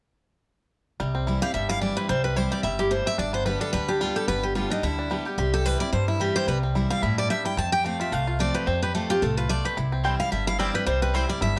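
Set in a light reverb, this lively, virtuosic bluegrass excerpt swings in 4/4 over a C, G, C, F, C progression. An up-front, full-bodied dreadnought guitar carries the accompaniment beside a twangy, percussive fingerpicked banjo playing arpeggios and a woody, thumpy gut-string upright bass. From 1.4 seconds a bright second guitar, with audible finger squeak and plate reverb, takes the melody, and a round, double-strung mandolin adds stabs between 10.0 and 11.2 seconds.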